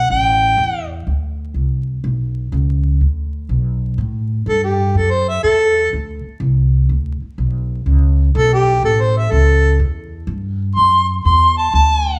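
Vinyl crackle and a moderate large-studio reverb surround this short cut of acoustic country blues, played live by a duo in one room. The mood is gritty and swaggering, set in a swung 4/4. An upright bass holds the low end the whole way through, up front, with a woody, growly pizzicato tone from its steel strings. A mellow harmonica sounds briefly at the opening, then returns at 4.5 seconds to carry a jazz-style solo up front until the end. Its soft attack, smooth top, light vibrato, scooped notes and tongue slaps give it a relaxed but knowing voice. The harmony moves from A5 through Csus2 and Bmadd9, then later settles on Bm and A7.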